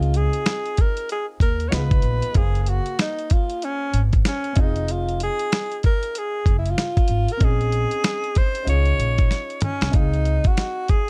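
Jazz-hop with a relaxed, smooth feel at 95 BPM and a light 16th-note swing in Db major, where a breathy, whispered tenor saxophone carries the mellow, vibrato-laced melody up front over a gritty, compressed sampler-style drum kit with a thumpy kick and a drum fill at 9.3 seconds, a growly pizzicato upright bass that drops out at 10.4 seconds, and an intimate, woody upright piano with audible action noise sitting in the background over lush chords from Dbmaj9 through Gbmaj9#11 and Bbm11, the piano and sax touched with plate reverb in a dark, dry production.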